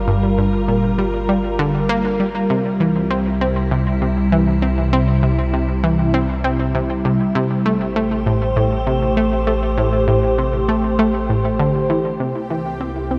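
Expansive and luminous, this cut from a longer piece of ambient, sequencer-driven space music rests on an evolving, morphing wavetable pad that holds mellow sustained chords up front, dressed in ensemble chorus and shimmer reverb. A bright, detuned sawtooth analog pluck plays a riff through chorus, tape echo and shimmer, while a deep, round sine sub bass anchors the harmony as it moves from Gm7 through C and Am7 to C7. At 12.3 seconds a bubbling, resonant stepped-filter texture enters high above, and a lush hall reverb bathes the recording.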